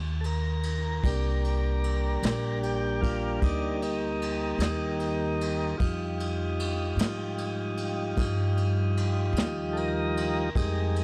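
A woody pizzicato upright bass opens this mournful, brooding slow blues in C minor at 50 BPM in 12/8, joined at 0.2 seconds by a tonewheel organ, up front with key click, vibrato and a slow rotary speaker, leading with sustained chords, and a dark, rolled-off brush kit of punchy kick, ride and snare, all in a dry, close 1970s-style studio sound as the harmony moves from Cm9 to Fm9 at 5.8 seconds in this fragment cut from a longer piece.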